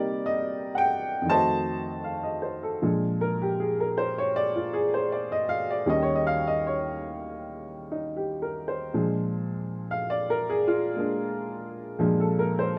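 A swung eighth-note feel in 4/4 carries this short solo jazz passage, taken from a longer piece, at an unhurried pace. A single upright piano plays throughout, its tone woody, boxy and slightly detuned, sitting up front with a light reverb around it. The opening bars move from Cm7 to F7b9, and at 2.8 seconds the music shifts into a new section where the piano takes a solo over Bb7, Eb7 and a return to Bb7 near 8.9 seconds. The range stretches from deep bass notes up into the upper treble. The mood is sophisticated and warm.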